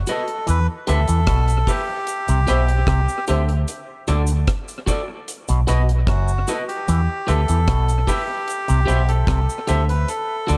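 The vintage muted fingered electric bass stands out most, dark, round and up front, holding down a roots reggae groove in E minor at 75 BPM in a straight 4/4 that feels hypnotic and serious. A reedy, breathy melodica carries the melody with dub echo, while an electric guitar at the edge of break-up adds twangy, compressed accompaniment soaked in lush chorus and dub echo. The deep reggae drum kit sounds dry, with a tight kick, hi-hat and rim click passed through analog delay, and a cabasa sits in the background. From 0.5 seconds an overdriven auto-wah clav joins with a hollow, nasal riff tucked behind the other parts. The chords move from Em through C, D and B before returning to Em and C, and the small room ambience gives this echo-heavy passage, cut from a longer piece, an enclosed, dubby atmosphere.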